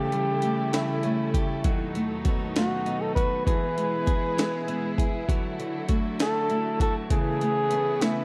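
Lush hall reverb wraps this dark, tender, romantic six-eight pop ballad fragment, where a mellow, jazz-style flugelhorn with light vibrato and tape echo carries the melody up front over fingerpicked steel-string acoustic guitar, a rich, smoothly bowed string section holding sustained chords, scooped clean electric guitar arpeggios tucked in the background, and a gritty, pitched-up jungle sampler-style drum kit with a thumpy kick sitting up front.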